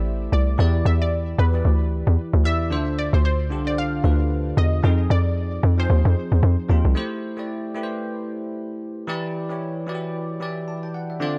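This soulful, hypnotic amapiano excerpt opens on a drop, with a hollow, bouncy log drum bass sitting up front, a bell-like tine electric piano bathed in lush chorus, and a round, warbling analog pluck melody carrying chorus and tape echo, all at 113 BPM in A minor with a swung sixteenth-note feel. The chords move through minor sevenths, including a dark turn to Fm7. After the bass drops out at 7.0 seconds, the bright, clean electric piano carries on alone until 11.4 seconds in a dry, dark mix.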